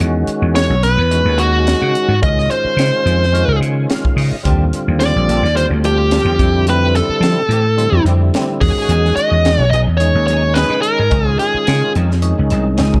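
Electric jazz fusion at 108 BPM with a funky, bright swing on the 16ths, built on a growly, punchy slap bass up front and a crisp drum kit with a high-tuned snare in a pumping small room, while a percussive tonewheel organ through slow rotary speaker and chorus vibrato comps maj9 chords and adds a fill at 3.3 seconds, a dark, distorted lead guitar carries the bluesy melody, and a compressed clean electric guitar enters at 4.5 seconds with background stabs, all in a dark production with light reverb, cut from a longer piece.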